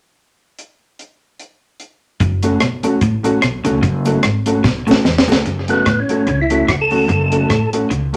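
A swung 4/4 groove at 147 BPM opens this energetic, mischievous ska passage in F# minor, cut from a longer piece, with a deep reggae drum kit entering alone at 0.6 s. The kit sits up front, dry with a high-tuned snare, tight kick, hi-hat and rim click, and a touch of tape echo. At 2.2 s the band arrives on F# minor: a woody, growly pizzicato upright bass on steel strings and a clean picked electric guitar riff, compressed and tucked in the background, are joined by a grainy, very quiet cabasa. At 2.4 s a dark fingered electric guitar accompaniment and a worn, slightly detuned upright piano playing stabs fill out the band. A drum fill leads into the final stretch, where a round, percussive tonewheel organ takes the melody up front from 5.7 s, its third-harmonic percussion colored by chorus vibrato and a fast rotary speaker. A short studio reverb gives the ensemble a wet, lively room sound.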